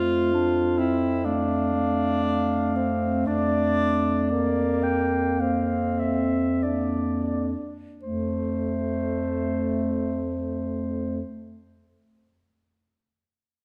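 From the first moment, a single-reed quartet of two clarinets, alto saxophone and bass clarinet plays together in this tender, serene classical excerpt, moving in a gentle rubato that slows over its first 8.0 seconds. A warm clarinet carries the melody in its upper register. Beneath it, a clear alto saxophone sits up front with a second line, while a dark clarinet supplies a distant, roomy accompaniment in the middle. The mellow bass clarinet holds a low, soft-attacked foundation. The harmony rests on a major chord, moves to a new chord above the same bass note at 3.3 seconds, and returns home at 8.0 seconds, where a new section begins. A wet concert hall reverb surrounds the ensemble, and all four instruments fall silent at 11.2 seconds.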